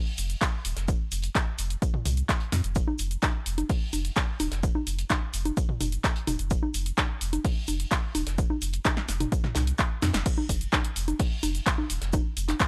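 A small room frames this trippy, raw acid house excerpt at 128 BPM in a straight 4/4, where an up-front, punchy electronic kick enters at 0.4 s beneath a deep, round sine sub bass that pumps with the sidechain, while a tape-toned analog drum machine rattles congas, cabasa, handclaps, toms, hi-hat and crash with a short room on its snare, clap and hats, and a loose acoustic indie kit sits in the background with dulled, pumping hats, shaker and snare, before a drum fill at 10.0 s tips into the drop at 10.3 s.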